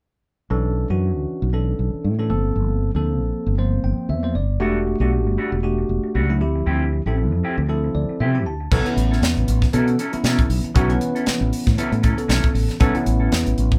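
A bell-like tine electric piano and a round, up-front fretless bass open this nocturnal, slick electric jazz fusion excerpt at 117 BPM in B minor with a light 16th-note swing, moving through minor eleventh chords with brief electric piano fills, before a mellow, clean, fingered electric guitar adds stabs at 4.6 seconds and a crisp, airy drum kit with a high-tuned snare, punchy kick and dark cymbals joins at 8.7 seconds as the harmony settles on B9sus4, the band heard together in one room with light reverb.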